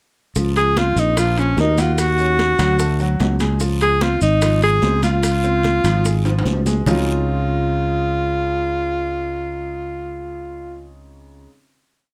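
Sunny and danceable, this short, complete Afro-Cuban jazz piece moves in a straight four with a close, detailed, dry sound. A clear alto saxophone carries the melody up front from 0.6 seconds, shaping motif-based period phrases with a soft attack and jazz vibrato. Beneath it, a growly, sustaining fretless electric bass plays an up-front tumbao that anticipates the chords, while a baby grand piano with long sustain sits in the background with a montuno in octaves. The percussion is layered: congas with slaps and open strokes, tight high-tuned bongos in steady eighths with hand bell, ringing metal-shell timbales with shell pattern and bell, a raspy guiro and grainy, band-limited maracas. A drum fill at 6.3 seconds leads into a held Dbmaj9 final chord, where the percussion drops away at 7.0 seconds and the saxophone, bass and piano ring on to the close.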